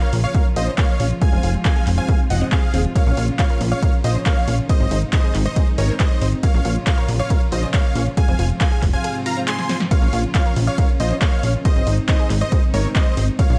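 A straight pulse from an up-front, punchy electronic kick drives this bittersweet uplifting trance excerpt. A dry, overdriven analog drum machine adds handclaps, hi-hat, ride cymbal and snare, and a plucky, wave-folded analog bass pumps beneath a huge, detuned supersaw melody with tape echo. A phaser-washed unison lead carries a second line, a chorused analog pluck spins arpeggios in the background, and a distant, lush symphonic string section holds chords, all set in dark digital ambience until a short break at 9.0 seconds ends in a drum fill.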